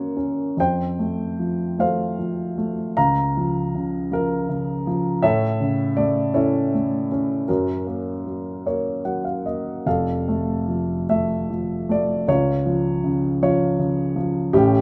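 A lone upright piano with a woody, up-front tone opens this calm, lyrical classical piece, cut from a longer work, in a gently rubato 6/8 at about 48-54 BPM, tuned to A4 = 442 Hz and ranging from F1 to Bb5. Its harmony moves through Gb, F, Db6 and A before settling back toward Gb, and a short piano fill from 8.6 to 9.9 s leads into a restatement of the opening phrase at 9.9 s. Close, detailed miking and light reverb give the intimate, warm sound.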